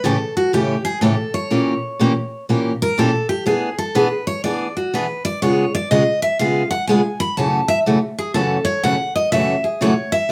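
Heard in a wet studio reverb with a short tail, this brief jazz excerpt has the feel of a band playing live together in one room. At 123 BPM in 4/4 with a swung eighth-note feel, the mood is swinging and charming. A picked steel-string acoustic guitar carries the melody and the solo from 0.0 to 10.3 seconds, ranging from F#4 to B5 with a bright, full-bodied jumbo tone and fresh strings sitting up front. A second picked steel-string guitar plays accompaniment across the same span, from F#2 to A#4, with a warm concert-guitar body and audible finger squeak, also placed close. The harmony moves from A7 through A#dim7 and E7 to C#7, settling on F#m7 near the end.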